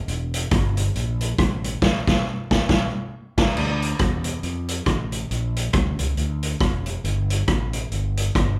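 A fretless electric bass and a street-band drum kit open together in this short, energetic and mischievous ska cut from a longer piece, swinging at 138 BPM in D harmonic minor, with a boomy kick, medium-tuned snare, rim clicks, hi-hat and crash sitting mid-forward and up front with a rolled-off top alongside a warm, direct and amped low bass line, the band playing live in one large studio room with moderate reverb and hitting an accent between 1.8 and 3.6 seconds before the repeated section.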